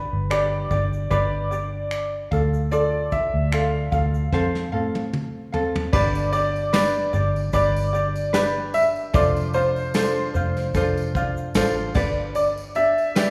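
Bathed in lush, church-like reverb, this heartfelt, carefree acoustic pop excerpt in G mixolydian moves at 75 BPM with a gentle sixteenth-note swing, as a clear, woody, slightly detuned upright piano carries the melody over fingerpicked ukulele, a round, punchy foam-muted electric bass and a dark, smooth brush kit that joins at 0.3 seconds and plays a fill from 4.3 seconds, before a jingly tambourine enters in the background at 5.9 seconds.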